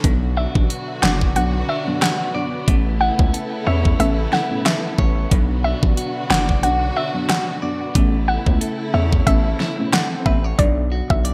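A swung sixteenth-note groove at 91 BPM in 4/4 drives this tough, hypnotic dancehall passage in B minor, built on a layered, electronic pop drum kit with a knocking kick, fat overdriven snare, handclaps, rim clicks and hi-hat, sitting up front with gated reverb and a small-room character. Beneath it, a punchy, saturated 808-style bass with a heavy sine core hits hard and decays quickly. The harmony circles between Bm and Aadd9, carried by a dark, detuned chord stab with chorus and phaser in the background, a distant, lush string section whose sustained, vibrato-rich chords breathe with sidechain pumping, and a bright, clean electric guitar picking compressed arpeggios. From 0.4 seconds a soft, round pluck sings the melody in a high register, treated with chorus and digital delay, while a very quiet electronic swell appears at 9.7 seconds. The whole mix has a bright 1980s-style digital sheen with light reverb and digital ambience.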